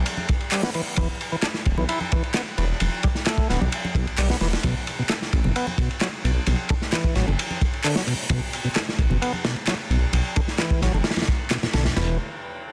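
A crunchy, saturated breakbeat drum kit with a tight kick and dark cymbals sits up front in this funky, gritty breakbeat excerpt at 131 BPM, joined by background congas and tape-toned electronic handclaps, while a thick, menacing detuned saw bass and a lightly overdriven percussive tonewheel organ riff, soaked in dub echo, both carry filter sweeps over an Em to B5 progression in a dense, heavily limited small-room mix.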